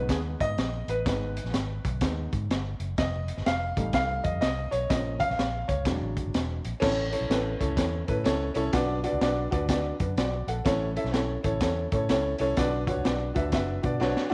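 Moderate echo-chamber reverb and small-room ambience surround this driving, passionate excerpt of uptempo 1960s-style soul at 125 BPM in 4/4, swung on the eighths and set in G# dorian. Up front, a dark, woody, boxy upright piano with short sustain takes a solo through the first 6.8 s. It plays over a round, foam-muted, amped electric bass and a gritty, saturated breakbeat kit with a punchy kick, a high-tuned snare and cymbals with a rolled-off top, while the harmony moves from G#m through F7, A#m and E7 into an A-to-Bm passage, closing with a piano fill at 13.8 s and a drum fill at 14.0 s.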